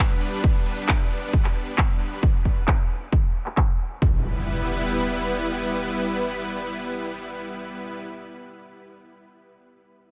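Driving and soaring, this short excerpt of uplifting trance moves at 134 BPM in 4/4 with a straight feel, centred on E minor. A lush, detuned supersaw pad sits up front throughout, holding sustained chords with a slow attack and long release, its bright sawtooth unison thickened by a sub octave and pulsing with sidechain pumping. A techno drum kit of handclaps and smooth hi-hats runs through the first 4.0 seconds under low-pass filtering and a filter sweep, while a heavy, up-front electronic kick drum joins at 0.4 seconds, both carrying a tape-warm character from being re-recorded in a small room. At 4.1 seconds the drums drop away and an electronic impact arrives beneath the pad, as the harmony stays on E minor. Light reverb gives the mix a touch of space.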